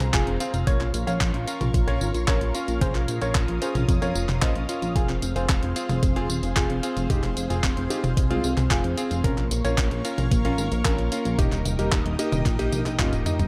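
Danceable and nostalgic, this short italo disco passage, cut from a longer piece, moves in a straight 4/4 over a progression that circles between Fm and Bbm before landing on Eb. A dark, intimate grand piano carries the melody, its short notes carrying audible action noise and trailing a delay, while a bright electric grand piano adds cutting, clangy stabs from 0.1 seconds. Underneath, a glossy, retro synth bass sits up front with a plucky, fast attack and chorus, and a lush, thick unison pad holds sustained chords in the background, slowly blooming through chorus and phaser. The rhythm comes from a thumpy, sampler-style electronic kick and a detuned 8-bit drum machine supplying handclaps, hi-hat, tambourine and toms, both re-recorded in a large room, with a drum fill arriving at 12.7 seconds. Light reverb and digital ambience give the production a dark, warm sheen.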